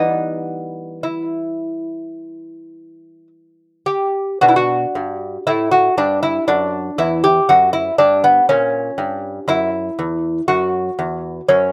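Classical baroque-style dance for solo lute, solemn and introspective, unfolding at a slow, rubato 52-60 BPM in 4/4, as the delicate, fingerpicked gut and double strings, some doubled at the octave, sit up front with a dry, open-air sound, moving from E minor to B minor at 4.4 seconds and reaching an F# chord at 8.5 seconds in this brief cut from a longer piece.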